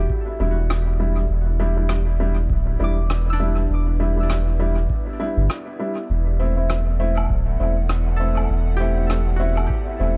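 The recording sits in a deep wash of studio reverb, with echoes trailing off the parts into a spacious, meditative haze. This ambient dub fragment opens on a lightly swung groove, with a round sine sub bass up front and a deep, tape-softened electronic kick beneath it. A small-room rim click and woodblock, mid-forward with a rolled-off top, tap along through dub echo, while an upright piano adds woody stabs that also spill into dub echo. Ringing, fingerpicked concert harp arpeggios drift through tape echo above, and a breathy, detuned pad with a noise layer and moving notch fades in softly in the background, thickened by chorus. The harmony rests on Em7 before shifting to C6 at 6.1 seconds, in a passage cut from a longer piece.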